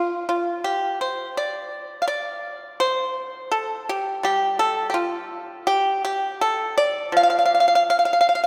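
This serene, elegant piece of Chinese traditional music, cut from a longer work, features a solo pipa across its 8.5 seconds, moving freely in a rubato feel. Played with fingerpicks, the pipa sounds bright, percussive and dry, sitting up front and ranging from F3 to F5. A church reverb with a long tail surrounds it, lending the lone instrument a spacious, hall-like setting.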